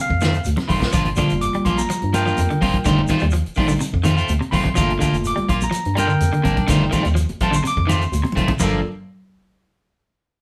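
A straight 4/4 afrobeat groove at 125 BPM in G minor, driven by a vintage drum kit with a punchy kick and dark cymbals, plus bright, high-tuned congas and a grainy shekere, with drum fills at 0.2 and 8.2 seconds. A hollow, organ-like FM bass anchors the hypnotic, intense feel as two slightly broken-up electric guitars share the space, one playing arpeggios with a warbly pitch drift and the other, up front, picking stabs over the alternating F7 and Gm7 chords. A barky, clean tine electric piano solos through the first 8.6 seconds, and the band plays live in one room with a wet studio reverb in this short cut from a longer piece.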